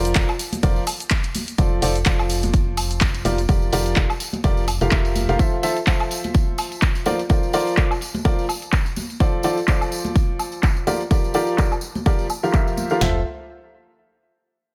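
A bright, woody upright piano riff opens this euphoric piano house clip at once, sitting up front with a pumping sidechain feel, a low-pass filter and delay. It arrives together with a hollow, organ-like FM bass whose dark, percussive notes strike fast and decay. The bass drops out at 5.4 seconds and returns only briefly at 13.0 seconds. Ringing, saturated tambourine and congas played with hard hands sit low in the mix beneath a layered electronic house kit, where a punchy kick and snare push forward with toms and studio reverb, while filtered handclaps, hi-hat, shaker and woodblock add lighter swung detail and a filter sweep moves through the drums. The uplifting harmony circles through C9sus4/F, Dm7/F and Gm7/F to Fmaj7 over a steady F pedal, with a fairly dry, loud overall sound.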